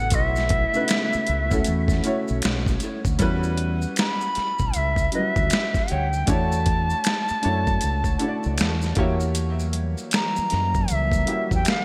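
Late-night and introspective, this neo-soul R&B excerpt sways at 78 BPM with a swung sixteenth feel in E dorian, led up front by a bright, reedy bansuri with vibrato and digital delay over a woody upright piano whose action noise sits close and intimate. A dusty, overdriven sampler-style drum kit with a thumpy kick and gated reverb pairs with a round, dark fingered dub bass, while maracas and finger snaps sit in the background and a hollow, detuned pad colours the opening and returns at 9.3 seconds. Between 2.8 and 9.1 seconds a slightly broken-up electric guitar through a small old amp adds a second line drenched in lush chorus and delay, set in 1980s-style digital production with light studio ambience.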